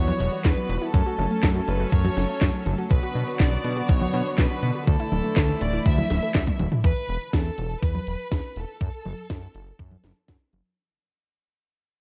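A thumpy, up-front electronic kick and an overdriven house kit with cracking snare, metallic hats, congas, handclaps and toms drive this straight 122 BPM italo disco cut in E dorian, melodramatic and nostalgic in mood, with a fat, detuned sawtooth bass anchoring underneath. A distant, focused violin section carries the melody through digital delay over rich, earthy bowed chamber chords, while a warbling, lo-fi pluck with chorus and tape echo ripples arpeggios in the background. After a drum fill, the sustained strings and pluck stop at 6.8 seconds, and the rest fades out through light reverb in a dark production.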